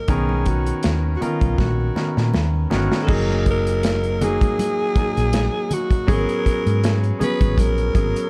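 A dark, warm studio sound with gentle reverb frames this brief, lush and romantic cut from a 1970s-style soul piece, moving at a relaxed 80 BPM with a light swing in F# major. A raspy, gritty alto saxophone with vibrato carries the melody over clear, intimate grand piano chords whose action noise and long sustain sit up front, while a round, amped hollow-body electric bass anchors the low end. A smooth, tight drum kit with a rolled-off top plays a fill from 1.6 to 3.1 seconds, very quiet bright congas add colour, and the harmony moves from Bmaj9 to F#69 at 3.1 seconds before arriving on C#7sus4/G#.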